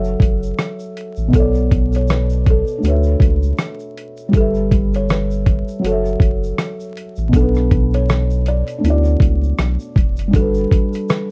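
Mellow and dreamy, this lo-fi hip hop excerpt in D major drifts at 80 BPM with a gentle 16th-note swing, its dark production wrapped in light reverb and vinyl crackle as the chords move from F#m7 through Bm9, Dmaj13 and G69 before closing on Gmaj9. A buzzing, woody kalimba carries the melody through a low-pass filter and tape echo, while a soft, felt-muted upright piano with cassette-tape character fills in the accompaniment and a deep, thick sub bass sits up front until 10.7 seconds. From 0.2 seconds, a dusty, overdriven sampler-style drum kit brings a thumpy kick, hi-hat and rim click, with a grainy tube shaker tucked close and dry in the background.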